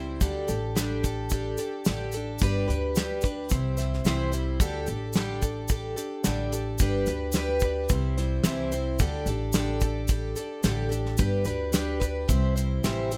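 A straight 4/4 pulse drives this short folk rock and heartland rock clip, cut from a longer piece, with a damped 70s drum kit entering at 0.2 seconds on hi-hat, kick and snare. The kit sits dry and up front, with a fat snare and a tight kick. Underneath, a pizzicato upright bass with steel strings gives a woody, dark low end, while a tube shaker adds a grainy, vintage, band-limited texture in the background. The accompaniment comes from a picked, plugged-in twelve-string acoustic guitar, bright and shimmering with its octave-doubled strings, an auditorium character and audible finger squeak. It cycles through Dsus4, G and C, giving the passage a warm, jangly mood, all heard through studio ambience in a rough home demo mix.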